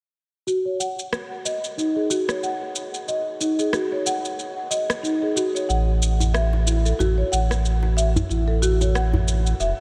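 A woody, up-front marimba with medium mallets plays arpeggios through a low-pass filter sweep, analog delay and shimmer reverb in this meditative organic downtempo excerpt at 92 BPM in F# dorian with swung 16ths, over a produced electronic shaker and rim click, with a round, deep sine sub bass entering at 5.7 s on an F#m/A chord and a very quiet, close, soft-handed djembe joining at 6.2 s, all set in a dreamy mix soaked in cathedral reverb.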